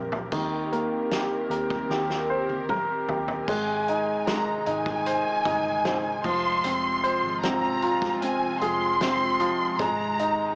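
A lush, expressive violin section enters high at 3.5 seconds over a clear, polished baby grand piano, a breathy, warbling pad with chorus, a round, muted electric bass in the background and a loose, roomy drum kit with a fat snare and dark cymbals, giving this tender, emotional pop ballad excerpt a lo-fi cassette sound in a small room.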